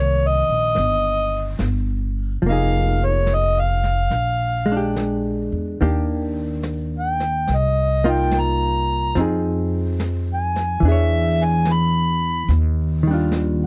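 A dry, close 1970s-style studio sound frames this romantic, tender swung jazz ballad, where an up-front overdriven harmonica, gritty and amplified with light vibrato, tongue slaps and scooped notes, solos until 12.5 seconds over a dark, clean, compressed hollow-body guitar, a woody, growly pizzicato upright bass and a quiet, natural brush kit on snare and hi-hat that enters at 0.8 seconds.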